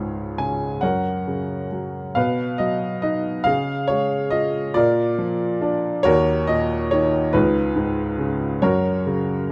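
Captured by close, detailed microphones in a recital hall with moderate reverb, this melancholic, reflective classical piece for solo upright piano, clear, woody and up front with long sustain, unfolds in rubato 6/8 at 46 BPM in F# major, moving through C#, F#, B, A#, D#m and C#add9 before settling on F# at 8.6 seconds in a short passage cut from a longer work.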